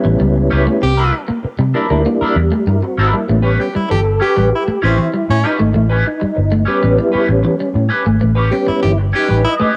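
A straight, even 4/4 groove drives this gritty, funky clip, cut from a longer piece and captured as a home recording on cassette with a light reverb. The vintage muted fingered electric bass sits up front, its foam-muted tone round, dark and punchy, while a clean, twangy, compressed electric guitar plays a bright picked riff through a lush chorus. A second electric guitar, dark and at the edge of break-up, adds picked accompaniment through a wah, and a mellow tonewheel organ fires off stabs colored by chorus vibrato, a slow rotary speaker and tape echo. From 0.8 seconds a breathy baritone saxophone with a pop-style vibrato carries a second line as the band hits accents over a shift from A9 to C9. At 3.3 seconds the harmony returns to A9 and the organ takes a solo that runs to the close of the clip.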